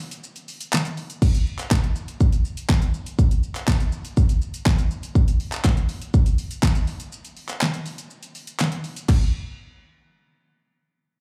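A straight 4/4 pulse at 122 BPM drives this energetic, bittersweet pop fragment, cut from a longer piece. An electronic, layered drum kit enters at 0.1 seconds and sits up front, with a punchy kick, a fat snare, warm hi-hat, shaker, crash cymbal and handclaps, all re-recorded in a small room for a produced yet physical edge. A human group handclap adds a brief crisp touch near the start, then returns at 5.6 seconds as a very quiet, close and dry acoustic layer beneath the kit. The opening moments and a stretch later on play as breaks, and the drum kit stops at 9.2 seconds as the piece moves into a new section. Over it all hangs the feel of a live gig heard through a venue's PA, with club reverb lending the sound a roomy glow.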